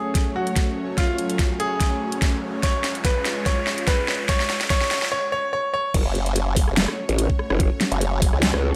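Swung sixteenths in a half-time 4/4 feel drive this aggressive, chaotic piece of heavy wobble dubstep. An overdriven, knocking electronic kick and a dubstep drum kit with a huge snare play a drum fill beneath a brilliant grand piano melody with dub echo, a lush, detuned supersaw pad with sidechain pumping, and a riser in the background, over chords moving from F#m to C#. After a short break, the drop lands at 5.9 s as the piano stops and a growling, saturated growl bass enters, joined at 6.1 s by a formant-sweep wobble bass built on a pulse wave, both with chorus and overdrive, up front in a mix with light reverb and digital ambience.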